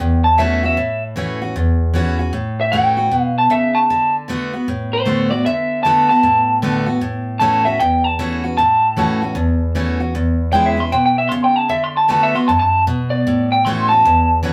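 Rock in A mixolydian at 154 BPM with a swung eighth-note feel, this rowdy, rollicking clip captures a band playing live in one room with moderate studio ambience. A twangy, slightly broken-up electric guitar through a small old amp carries a clean lead solo up front from start to finish. Beneath it, a full-bodied jumbo steel-string acoustic guitar picks the accompaniment through A6, D6 and E6 chords, with audible finger squeak.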